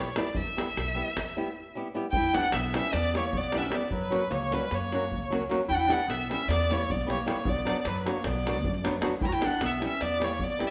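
Balkan folk in the manner of a wedding band, this short excerpt from a longer piece moves at a fast 305 BPM counted in eighths, in 9/8 with a straight feel and an E dorian color with a raised fourth, its mood both bittersweet and fiery. A single bowed violin carries the melody up front, its tone smooth and even with vibrato, yet set at some distance in the room. Beneath it, a fingerpicked acoustic flamenco guitar supplies accompaniment, while a woody upright bass with steel strings plays pizzicato and the deep davul drums along from just after the start. After a break between 1.2 and 2.1 seconds, a clear clarinet with a soft attack enters at 2.1 seconds, adding a classical-style second line below the violin. The harmony moves from Em through F#, back to Em, then Bm and Em again, all set in a moderate recital-hall reverb.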